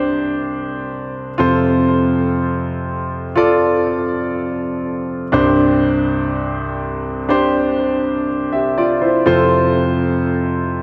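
A warm concert grand piano plays alone, up front, with a natural tone and deep bass, moving between Csus2 and F chords across C2 to E5, its sound touched by a subtle chorus and analog delay. This tender, emotional pop passage moves at a slow 61 BPM in a straight 4/4. A plate reverb soaks the dreamy mix, and this short section, cut from a longer piece, runs for 10.8 seconds.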